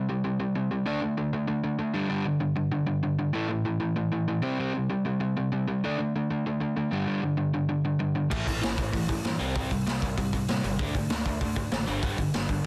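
An up-front, overdriven electric guitar opens this rebellious punk rock excerpt alone at a brisk 194 BPM, picking a straight-ahead riff that cycles through C5, D5, G5 and A5 power chords. At 8.3 s the band kicks in: a bright, distorted second guitar and a growling, overdriven picked bass sit in the background, while a raw garage drum kit pushes forward with a punchy kick, a medium-tuned snare, hi-hat and crash cymbal, and a gritty, saturated, rolled-off small-room sound. Light reverb and a dense, heavily limited modern master keep the energetic burst tight and loud.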